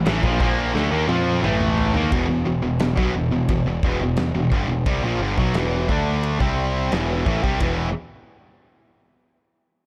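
An up-front overdriven electric guitar leads this aggressive, dark heavy metal excerpt with a picked riff, joined by a double-tracked, compressed distorted guitar that drops out at 2.1 seconds, a bright high-gain guitar riff set further back, a growling overdriven picked bass, and a big-room acoustic rock kit with a punchy kick and a medium-tuned snare whose fill runs to 2.1 seconds, as the harmony moves from A5 through Em to E5 in a small room.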